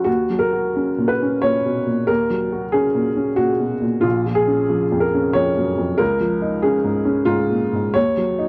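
A woody, boxy upright piano with short sustain sits up front and plays alone throughout this brief, melancholic and intimate fragment of neoclassical minimalist music, moving in a rubato three-beat lilt from Ebm7 through Bbm and Dbadd9 before returning to Ebm7 near 8.0 seconds, all wrapped in light reverb and the worn, warbling pitch drift of old cassette tape.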